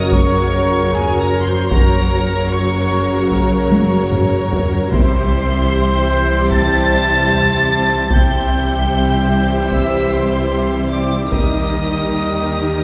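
Heard from further back in a wet concert hall, this triumphant, adventurous cinematic cue, cut from a longer piece, sets a lush bowed violin section on the high melody, joined by a distant, airy flute on a second line, while a second violin line, expressive violas with portamento, soft-attack cellos and rich double basses fill the string body beneath. Dark French horns, very quiet mellow trombones and a thick pipe organ on foundation stops hold sustained chords, and a tight, mellow trumpet section adds stabs over a harmony that moves from Gb to C at 4.9 seconds and to Eb at 11.3 seconds. A taiko ensemble struck with heavy sticks drives the epic orchestral sound, with a drum fill from 3.7 to 4.9 seconds.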